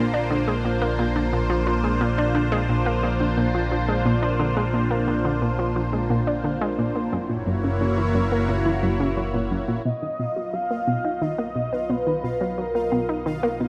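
Ambient, sequencer-driven space music at 88 BPM in a cosmic, luminous mood, where a lush, detuned unison pad with chorus and phaser holds sustained chords over a round, nasal analog pluck riff with chorus and analog delay and a fat, saturated analog bass, moving from Bbadd9 through Gb7 to a B lydian Bmaj7 at 9.9 s, where a smooth, expressive synth lead with vibrato, analog chorus and analog delay enters up front at 9.8 s and a faint pulsing, tempo-synced gated texture with chorus and built-in reverb joins at 10.2 s, all set in a moderate plate reverb in this short section cut from a longer piece.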